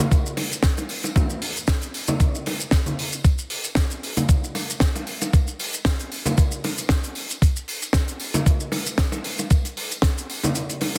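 A dense, heavily limited modern master sits in a small room reverb, giving this short nu-disco excerpt a sleek, cosmic polish at 115 BPM in 4/4 with a light swing on the sixteenths. Up front, a thumpy, tape-tinged electronic kick drum with a sampler-style character carries the pulse from 0.1 seconds, sounding as though it was re-recorded in a small room. Beside it, a tight acoustic funk kit, also up front, adds hi-hat, shaker and a high-tuned snare with a natural, small-room feel. Farther back, tambourine, bongos and congas ring out in a large room, played with hard hands. The kick drops out at 10.6 seconds, leaving the kit and hand percussion to close the passage.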